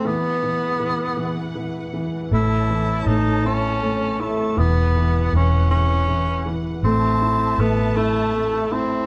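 A breathy, whispered tenor saxophone sings an intimate, jazz-tinged melody with scooped notes and vibrato over a natural baby grand piano with short sustain and a lush, woody, dark string section, and at 2.3 s a round, punchy, foam-muted vintage electric bass joins up front in this heartfelt, swaying pop piece in 6/8 at 53 BPM in E major, moving through Eadd9, A and Am with a band playing live in a moderate stone room with lossy compression artefacts.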